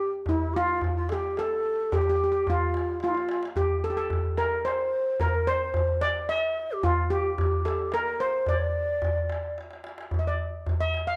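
A steady 3/4 pulse at 110 BPM drives this hypnotic, melancholic Arabic maqam ensemble passage in D maqam bayati: a metallic, shimmering steel pan carries the melody close and dry, a breathy, mellow low ney with vibrato and soft attack traces a second line until 9.6 s, and a deep, clay-shelled darbuka struck with hard hands drops fills at 3.0 s and 9.6 s, within a dark production with moderate studio reverb.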